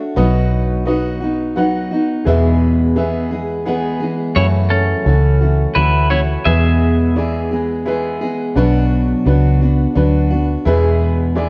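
A moderate plate reverb surrounds this country passage, and the players sound as if heard from further back in the room. At 86 BPM in 3/4, the mood is sunny and nostalgic, with the chords moving through B, E, F#m7, E, Bm and back to E. A dark, full-bodied jumbo steel-string acoustic guitar, picked and up front, opens the accompaniment at the start. At 0.2 seconds it is joined by a bright upright piano, woody and intimate with short sustain and audible action noise, and by a round, foam-muted vintage electric bass with an amped tone. From 4.4 to 8.2 seconds a clean, twangy electric guitar carries the melody, its picked lines compressed and prominent. The passage is cut from a longer piece.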